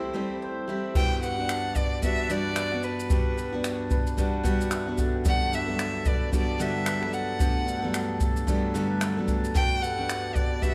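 Set in the moderate reverb of a church, this sunny, heartfelt acoustic pop excerpt with a light 16th-note swing opens on a rich, focused violin melody with vibrato, up front. Beneath it sit a bright, full-bodied picked steel-string guitar, an intimate concert grand piano in the background with audible action noise and long sustain, and a double-strung bowl-back mandolin playing arpeggios. At 1.0 seconds a soft, flute-like tonewheel organ joins with sustained chords through a slow rotary speaker, and an up-front jazz brush kit enters with dark cymbals, a boomy kick, crash, shaker and finger snaps, over harmony that runs from Am7 to Gmaj7 and then D6/G.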